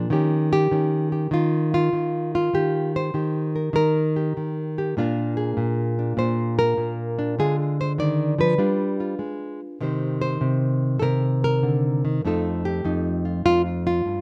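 Swung eighth notes in 4/4 give this short solo jazz passage, cut from a longer piece, its warm, swinging lilt. A lone nylon-string guitar carries the whole performance, fingerpicked with a classical touch and a full-bodied, warm acoustic tone, sitting up front with finger squeaks audible as it moves through seventh, diminished and minor-seventh chords. The sound is dry and open-air, recorded outdoors with little reverb.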